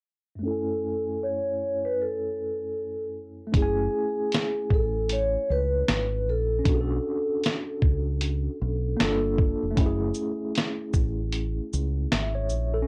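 A swung 77 BPM lo-fi hip hop groove in F# minor settles in at 3.5 seconds, when a muffled, pitched-down sampler-style kit with thumpy kick, fat snare, hi-hat and shaker joins a round, dark dub fingered bass beneath a worn, slightly out-of-tune tine electric piano with medium tremolo and a mellow soft-mallet vibraphone melody that rings until 9.4 seconds. The mood is hazy and reflective, with cassette tape coloring the electric piano, vibraphone and drums and light reverb over the whole mix, after a filter-swept opening on F#m9, with chords moving through Bm7 and Gm9 in this short cut from a longer piece.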